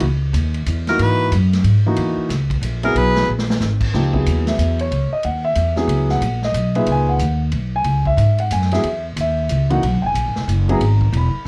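Heard through worn, warbling cassette tape with light reverb, this short cut from a longer modal jazz piece in swinging 3/4 has a hypnotic, cool mood. A warm grand piano comps up front while a woody pizzicato upright bass, thickened by transformer saturation, anchors the low end, and a distant, roomy big-band drum kit with a punchy kick and a medium-tuned snare swings behind them. A bright tenor saxophone steps forward with scooped notes for a brief solo phrase from 0.9 to 3.3 s, and a drum fill follows at 3.3 s; later, at 7.9 s, the chords move from C#m9 to E6/C#.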